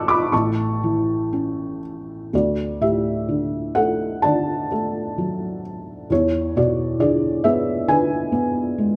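Classical solo piano in a lyrical, calm mood, this brief passage lifted from a longer work unfolds with a rubato feel in 4/4. A felt-muted upright piano carries everything alone, its dark, intimate tone softened by thick felt, with audible action noise sitting up front as it spans from A1 to G6. The harmony moves from A to D at 2.3 s and on to E7 at 6.1 s, while a moderate recital hall reverb gives the close, mellow sound some gentle space.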